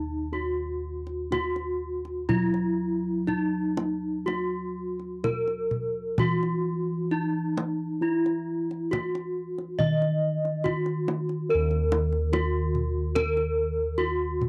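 A bronze metallophone and bossed gongs sound together from the very start of this stately Javanese gamelan excerpt, which moves at 61-72 BPM in a straight 4/4 and is tuned to A4 = 438 Hz. The metallophone carries the melody between Eb4 and Eb5. Struck with a horn mallet, its ringing tone glimmers with the beats of paired tuning, sits up front in a boxy small-room sound, and is touched by a slapback echo. Beneath it, the gongs hold the bass from Eb2 upward, round, dark and smooth, with a beating metallic glow of their own. The kendang joins at 1.1 seconds, tight and band-limited, with a vintage, hard-handed sound. The dry, close 1970s-style studio recording adds only light reverb, and the music moves into a new section at 11.5 seconds before the fragment breaks off at 14.5 seconds.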